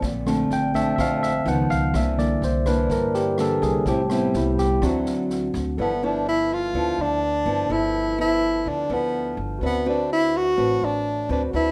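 Sunny and romantic, this short bossa nova cut from a longer piece moves at 125 BPM in a straight 4/4, with the feel of a rough home demo in a small, wet-sounding room. A bright, barky tine electric piano takes a clean, direct solo over the first 5.8 seconds. Beneath it, a small fingerpicked nylon-string guitar and a woody pizzicato upright bass hold the accompaniment throughout. A big-band drum kit with a punchy kick, rim click and medium-tuned snare plays only until 5.6 seconds. At 5.8 seconds a mellow, breathy tenor saxophone steps up front with the melody, using subtone, light vibrato and scooped notes in a jazz style. The harmony opens on Bbmaj7, and the sax passage moves from G13 to D13.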